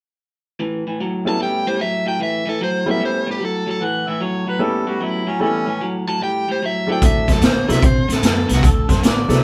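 A rollicking, soulful electric blues shuffle opens on a bright, twangy guitar riff at the edge of break-up, soon joined by a clear, polished upright piano and an overdriven lead guitar carrying the melody. From 3.8 seconds a vintage harmonica with light vibrato, tongue slaps and scooped notes adds a second line, while the band sounds as if it is playing live together in one room with moderate reverb. At 7.0 seconds, as the harmony moves from A9 to D9, a woody pizzicato upright bass arrives alongside a gritty, boomy garage drum kit with hi-hat, snare and kick that sits up front.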